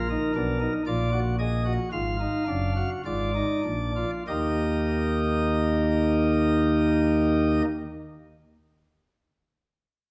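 A pipe organ sits up front with light, bright flute stops in a baroque voicing, carrying this serious, solemn three-part fugue entirely on its own. The piece is a short cut from a longer classical work in 4/4 with a straight feel, moving slowly at 48-60 BPM and tuned to A4 = 437 Hz. Across a span from Gb1 up to F5, the opening passage slows down through its first 4.3 seconds over a Bb7 chord. It then settles onto Eb as a second section begins at 4.3 seconds. The organ stops sounding at 7.6 seconds, and the second section runs on to 9.3 seconds, all set in a wet recital hall with a 1.6-second reverb.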